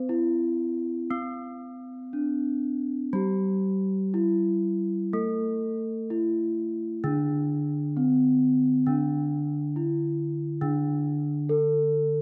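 Two bronze gamelan-type metallophones ring out together from the first moment of this serene, shimmering gamelan fragment in D slendro, moving at 59-70 BPM in a straight 4/4: a mellow, band-limited melody played with padded disc mallets sits above a bright, close-miked lower accompaniment struck with a horn mallet, both placed up front in a reverberant recital hall, before a new section arrives at 10.6 s and the cut ends at 12.2 s.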